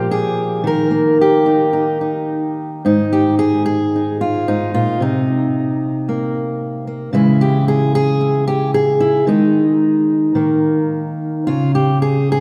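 Drenched in a wet church reverb with a long 2.5-second tail, this short excerpt sounds as if it were captured in a church or concert hall, with the guitar sitting up front against the resonant space. It is a solo folk piece for fingerpicked steel-string acoustic guitar, played in Ab major at 112 BPM in 4/4 with a loose, rubato feel. The guitar's tone is dark and concert-like, ranging from Ab2 up to Bb4 across its 12.4 seconds. The harmony moves from Bb5 and Eb into a second passage at 2.8 seconds that passes through Ab5, Cm7, Dbm and Ebsus4 before settling on Eb5 and falling away from chords at 11.5 seconds. The mood is warm and nostalgic, with the borrowed Dbm chord adding a wistful shade, and the fragment is clearly lifted from a longer piece.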